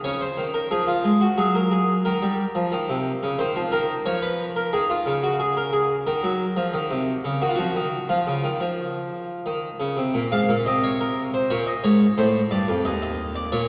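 Moving in a straight, even three-beat metre, this short passage from a longer baroque-style two-part invention carries a serious, solemn mood. A lone harpsichord plays throughout, its plucked tone full and up front, with the character of a French-style instrument sounding two sets of strings. The writing spans from a deep low register up into the upper treble, and the harmony shifts from major-leaning chords such as Db and Gb through Eb7 and Db7/F before turning to Ebm around 6.1 s. A new section begins at 10.2 s on Bbm and moves to Adim. The instrument sits in a church-like space with a long, wet reverb that lets each plucked note hang in the air.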